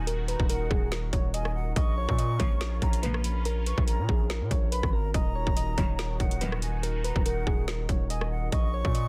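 Overdriven trap drums with a hard-clipped kick, woody snare and metallic hats drive this brooding, hard-hitting half-time hip hop excerpt at 142 BPM in Eb minor, where a heavy, distorted 808-style bass anchors the low end, soft, round electric-piano-like synth keys carry a dark melody through chorus and tape echo, an airy concert flute with vibrato adds a second line, a bright, detuned resonant pad sustains the Ebm and Bbm chords, and a rich, biting symphonic string section stabs in at 2.4 and 5.8 seconds, all inside a dense, heavily limited modern master.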